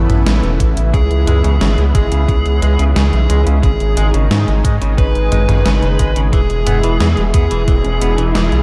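A dark, softly reverberant production frames this nostalgic, romantic synthwave passage in E major, moving at 89 BPM in a straight 4/4 and cut from a longer piece. A very quiet, brassy synth stab sounds only at the start before falling away at 0.9 seconds, while a lush, detuned unison pad holds chords through chorus and sidechain pumping, and a round, deep analog bass sits up front with tube saturation and the same pumping. A gated 80s drum machine supplies hi-hat, toms and a snare with gated reverb and a tape-warm tone, joined by a thumpy, overdriven electronic kick. From 0.9 seconds a dark, overdriven lead guitar carries the melody through digital delay, and a bright, twangy clean electric guitar picks arpeggios beneath it with its own delay. The harmony moves from Aadd9 through C#m7 and G#sus4 to E, and a background riser builds from 7.3 seconds to the close.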